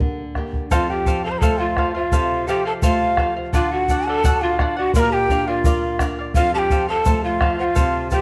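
Melancholic and wistful, this short Andean folk excerpt at 85 BPM in 2/4 opens on fingerpicked flamenco guitar and a round, up-front bombo, joined at 0.7 seconds by a breathy wooden quena carrying the melody with vibrato and crisp chiff, a cane pan pipe second line with rolled-off highs, shimmering double-strung charango and a grainy egg shaker, all set in a moderate recital hall reverb over chords moving from Gm through F, D and Bb.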